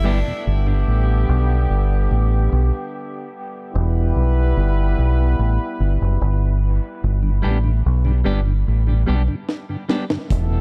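Dub reggae at a laid-back, spacious pace, this short excerpt cut from a longer piece sits in an echo-heavy small room. A deep, round fingered electric bass carries the whole passage up front, while a raspy, gritty tenor saxophone gives a brief forceful phrase at the very start, trailing dub echo. From 0.5 seconds a horn section carries the second line, distant and roomy with octave doubling and vibrato, its punchy notes also soaked in dub echo as the chords move from G to E minor and back to G. A mellow tonewheel organ with key click and slow rotary speaker sits in the background, and a clean semi-hollow electric guitar, picked and hollow-toned with its own dub echo, returns alongside it after 7 seconds. Near the end a dry, dark reggae drum kit with a high-tuned snare and tight kick arrives for a drum fill at 9.5 seconds.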